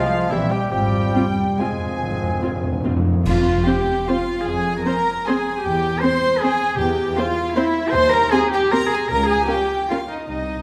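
Bittersweet and dark, this orchestral ballroom waltz in three moves with a rubato sway, and it is a fragment cut from a longer piece. The cello section sits up front, shadowy and intimate, carrying the bass beside a bowed double bass section, while a veiled violin section in the background holds the melody high above. A second violin section and a viola section, both played softly over the fingerboard with gentle vibrato, fill out the inner lines. In the opening bars a clear solo oboe, an airy, hollow little flute group, a background clarinet, a mellow bassoon and a distant, roomy French horn section add colour, and timpani with hard mallets play a fill beneath them. At 3.3 s the winds and horns have dropped away, and a bright crash of cymbals with concert bass drum marks an ensemble accent that opens the second section, where, once the timpani fades, the strings carry on by themselves. 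A generous scoring-stage reverb wraps the whole ensemble in a soft, cinematic glow.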